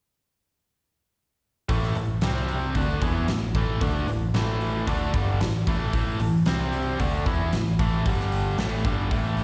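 An overdriven, double-tracked electric guitar sits up front with a raunchy, driving riff, its picked power chords moving between A5, C5 and G5 with a slapback echo, all entering together at 1.7 seconds in this fragment of a longer blues rock and southern rock piece. Beneath it, a vintage foam-muted electric bass adds a dark, round, punchy low end, while a huge arena drum kit pushes a straight feel with a fat snare, boomy kick and hi-hat. The sound is that of a live gig heard through the venue's PA, with light reverb, small room ambience and a recital hall tail.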